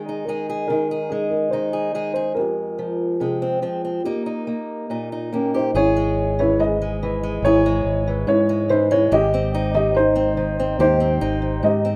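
A dark, slightly detuned upright piano carries the melody over a fingerpicked archtop guitar in this intimate, hopeful acoustic folk-pop ballad at 71 BPM in Ab major, with a warm fingered electric bass joining at 5.7 seconds, all set in a wet small room and a rough home-demo mix.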